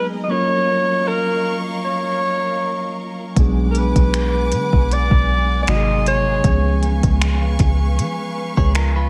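Dry and echo-heavy, this slow, romantic and tender contemporary R&B excerpt in F# major at 78 BPM opens with a breathy, up-front alto saxophone singing a scooped, subtone melody over a mellow tine electric piano and a woody, lush string section, before a round, dark 808-style bass and a gritty, sampled drum kit of finger snaps, hi-hat and soft kick arrive at 3.4 seconds, and a compressed, chorused electric guitar picks out arpeggios at 8.6 seconds.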